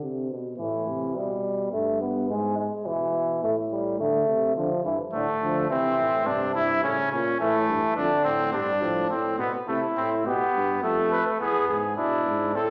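A mellow bass trombone opens this solemn, contemplative classical excerpt, sounding a low bass line with light vibrato and a smooth top, and a warm, roomy euphonium joins at 0.6 seconds with accompaniment that seems distant yet sits up front. The brass ensemble moves through an imitative canzona at 105 BPM in a straight 4/4, its harmony passing through chords such as G/B, E/G#, Dm and C before returning to Am. At 5.1 seconds a trumpet enters with a second line of its own, carrying light vibrato in a classical style. The euphonium stops at 9.1 seconds, and at 9.7 seconds a mellow cornet takes up the melody above the others with a soft attack and gentle vibrato. A wet recital hall reverb surrounds the ensemble, lending the harmonies a spacious, reverent glow until the passage breaks off on an E chord.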